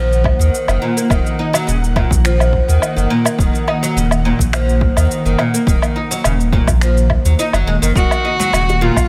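A lightly reverberant small-room sound frames this meditative, mystical organic downtempo passage at 105 BPM in Eb minor: a bright, woody, plectrum-plucked oud plays arpeggios through digital delay up front over a deep, round sine sub bass and an ethereal, warbling, detuned pad, both pumping with sidechain, while overdriven electronic cabasa, woodblock and finger snaps join a punchy, layered electronic kick on the drums, before a dark, intimate bowed cello melody with vibrato enters at 8.0 s and dry congas and bongos sit in the background from 8.4 s.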